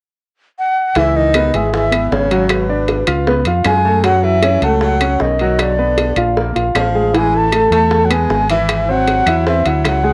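A home cassette recording with light studio reverb carries this sultry, sophisticated Afro-Cuban jazz excerpt in C# minor at 155 BPM, where a breathy, vibrato-laden concert flute takes the melody from 0.6 seconds over a bright baritone saxophone second line, warm grand piano chords moving from C#m9 through G#m7b5 and F#m7 to G#aug7, a round, punchy fingered electric bass up front, ringing metal-shell timbales, and tight high-tuned bongos and woody claves set in the background.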